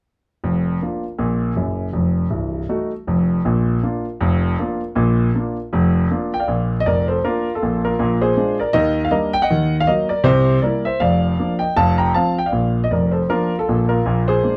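Stride jazz for solo concert grand piano, swinging and playful in 4/4, with a clear, natural tone, deep bass and long sustain sitting up front in a moderate club reverb with a dark, warm production, moving through a brief opening section and a second that starts at 6.5 seconds and passes through Ebmaj7, Ebm and C7 before settling back home on Bb.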